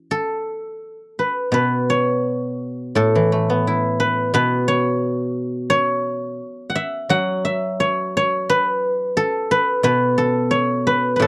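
Chinese traditional solo plucked-string music, elegant and pastoral, in which a mellow, silvery guzheng played with fingerpicks rings up front in A gong mode across a free, rubato 2/4 at roughly 82-90 BPM, captured in a dry, close 1970s-style studio sound touched with light reverb in this 11.3-second cut from a longer piece.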